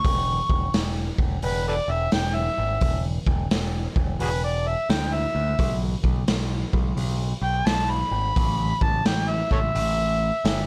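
This blues rock power trio fragment with a southern rock edge struts at 86 BPM in a swung 4/4, carrying a swaggering, raunchy mood from a chordless opening until an A5 chord arrives at 8.4 seconds. An amplified, overdriven harmonica takes the solo up front, with light vibrato, tongue slaps and scooped notes in a jazz style. Beneath it, a growling picked electric bass and a raw garage drum kit with a punchy kick, medium-tuned snare and rolled-off top hold a dry, close sound with little reverb.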